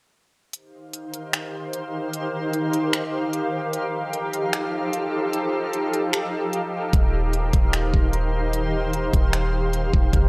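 Light reverb gives this short cut from a longer atmospheric cloud-rap track a soft, open space, with the drums and pad sitting up front. It moves at 150 BPM in 4/4 with a half-time feel, in Eb lydian tuned to A4 = 444 Hz, and the mood is blissful and dreamy. An electronic trap kit starts at 0.5 seconds with finger snaps and crisp hats. From 1.0 seconds a shimmering, ethereal pad holds sustained chords moving from Eb6 to F7 and back to Eb6. The pad has slow attack, long release, an octave-up shimmer, a granular wave-folded tone, chorus, its own reverb and sidechain pumping. At 6.9 seconds the knocking kick drops in alongside a deep, round, sine-like 808-style bass with a fast attack and dark decay, grounding the final stretch.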